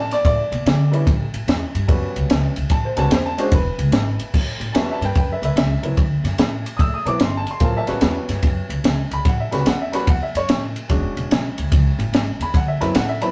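Electric blues shuffle at 146 BPM in A mixolydian, rollicking and swaggering, with a woody, smooth vintage upright piano of short sustain accompanying up front over pizzicato steel-string upright bass and a compact cocktail drum kit with a dark, rolled-off top, high-tuned snare, punchy kick, ride and crash, moving through A13, D13 and E13 changes in a rough rehearsal-room sound with tube saturation and modest small-room ambience, cut from a longer piece.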